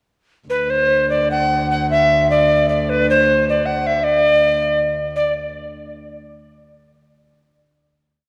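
A breathy alto recorder leads this short, rustic and festive medieval dance in 6/8 and D mixolydian, playing a tongued, expressive modal melody with ornaments and a woody chiff from 0.5 to 5.3 seconds. Beneath it, a single fretted viola da gamba holds a rich, ringing bowed drone on D2 with light vibrato, a soft attack and an airy bow. The straight-feel tempo of 99-113 BPM speeds up toward a final note that ends at 6.2 seconds, all set in a dark, warm production with a wet church reverb and tuned to A4 = 445 Hz.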